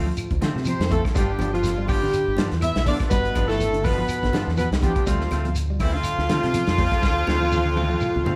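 Afrobeat at 122 BPM in 4/4 with a lightly swung sixteenth feel, this short excerpt cut from a longer piece sits in G mixolydian and moves from Dm7 to G7 and back, creating a hypnotic, driving mood. A warm horn section carries the melody up front with light vibrato, while a brilliant, punchy trombone and a clear, smooth-topped baritone saxophone play second lines further back. A deep, round fingered electric bass anchors the low end beside a dry, muffled soul drum kit with a tight kick and rolled-off top, which enters at 0.2 seconds and closes with a fill from 7.0 seconds. Two clean electric guitars sit in the background, one dark and playing arpeggios through spring reverb, the other twangy and playing stabs. Grainy shekere, woody claves and bright, high-tuned congas add quiet percussion. The band plays live in one large studio room with moderate reverb.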